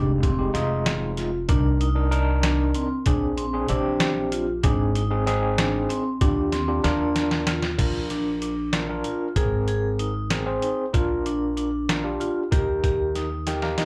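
Heard through a club PA with a touch of room reverb, this driving, intricate progressive instrumental runs in 5/8 at 190 BPM (eighths), built over chords moving from Fm7 through Cm7, Bb7 and Ab toward Ebmaj7, then a second section from 7.8 seconds on Bb, Abadd9 and Eb. An up-front, barky overdriven tine electric piano with medium tremolo and slapback echo carries the accompaniment through a combo amp, while a bright, close-miked vibraphone with medium hard mallets and its motor off rings out arpeggios with its own slapback echo. Below them, a woody pizzicato upright bass on gut strings and a gritty, compressed, pitched-down trip hop sampler-style kit with a thumpy kick push the groove, with drum fills at 6.5 and 13.5 seconds and a closing electric piano fill at 13.2 seconds before the cut.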